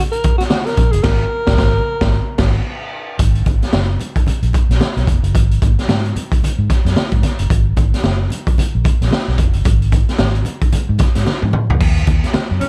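Funk at 112 BPM with a swung sixteenth feel and a sly, cool mood, this brief excerpt opens with a breathy, subtoned alto saxophone melody with vibrato and scooped notes over Ebm and Absus2, joined almost at once by a gritty, up-front garage drum kit with a high-tuned snare and punchy kick, bright, damped congas in the background, and, from 0.8 seconds, a round, foam-muted fingered electric bass. The sax then drops out, and at 3.2 seconds this rhythm section settles into a long Ab7 groove, all within a dark production with light reverb, before a drum fill at 11.3 seconds leads back to Ebm and the sax briefly returns at the very end.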